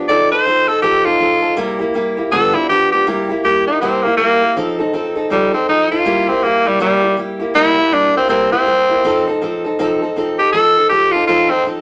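Swinging eighths drive this upbeat, retro rock excerpt at 161 BPM, where a raspy, gritty tenor saxophone with light vibrato and a smooth top takes a forceful, up-front solo from 3.1 seconds over a boxy, picked old ladder-braced acoustic guitar cycling through F7, C7 and G7 in a wet studio reverb.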